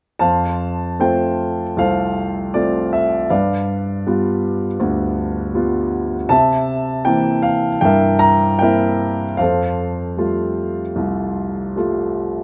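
Flowing in a rubato 4/4 at about 78 BPM, this calm, lyrical classical piece for solo piano sits in F major and moves through F, G7, C7 and a closing Fadd9, a short passage lifted from a longer work. The dark grand piano plays alone from 0.2 to 12.4 seconds, ranging from C2 to Bb5, with a mellow, slightly boxy tone, long sustain and audible action noise. Close, detailed miking keeps it up front and intimate, wrapped in light reverb.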